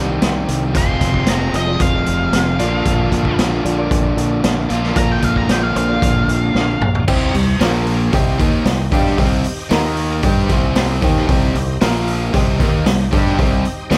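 A raw garage drum kit sits up front with a boomy kick and saturated, gritty small-room sound, driving this gritty classic rock excerpt in C minor at 114 BPM alongside a punchy, direct fingered bass and two picked overdriven guitars, one biting and one crunchy in the background, both playing riffs. From 0.8 to 7.0 seconds a dark octave-fuzz lead guitar solos high with wah and analog delay, and a drum fill leads into the second section, where a jingly, very quiet tambourine enters at 7.2 seconds. Underneath, a mellow concert grand piano with deep bass accompanies and adds a fill, while a shouting tonewheel organ with key click and slow rotary speaker holds very quiet sustained chords, all in light studio reverb.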